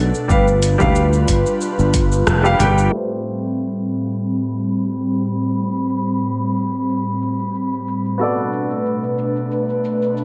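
This wistful sunset chillout fragment, cut from a longer piece, opens with a breathy, chorused pad, a present grand piano, a growly fretless bass and a metallic, ringing vibraphone melody set back in the mix. It sits at 91 BPM in 4/4 in A minor, with a light 16th-note swing. A tape-toned deep house kit of cabasa, congas, hi-hat and rim click keeps time, while a deep, layered electronic kick plays only until 2.1 s. The vibraphone bows out early, just before the full band hits an accent. From 2.9 s the bass has dropped away, the harmony settles on Am9 and a filter sweep runs to the end, with the piano and the mellow, slow-attack pad carrying the music on through a Bm7. A diffuse ambient delay trails the vibraphone and piano, and a moderate plate reverb with a softened top end gives the whole mix a dreamy haze.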